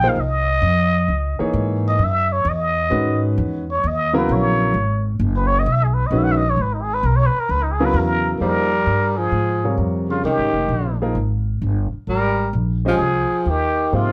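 A plunger-muted trumpet growls a raspy, wah-wah jazz melody with scooped notes over a present, warm grand piano and a woody, pizzicato upright bass in a cool, intense swing, joined at 8.4 seconds by a breathy tenor saxophone that adds a mellow second line, the whole set in light reverb.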